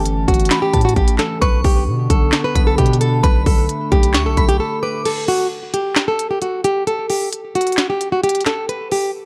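A half-time trap groove at 132 BPM drives the clip, with an electronic drum kit up front playing a hard-clipped kick, sharp snare, crisp hi-hats, handclaps and crash cymbal from 0.1 to 9.0 seconds. This brooding, dark hip hop fragment in B minor pairs that beat with a fingerpicked nylon-string guitar carrying the melody, its classical acoustic tone sitting up front with a touch of delay. Beneath it, a long sustained 808-style bass with a mellow sine character fills the low end, while a detuned, warbling analog pad with a slow attack holds moody, vintage chords under chorus. A glassy, crystalline FM bell adds a bright second line through chorus, phaser and delay, its decaying notes trailing on a long release. The chords move from A to Bm, and at 5.1 seconds the bass, pad and bell have fallen away, leaving drums and guitar over the break in a dark digital ambience.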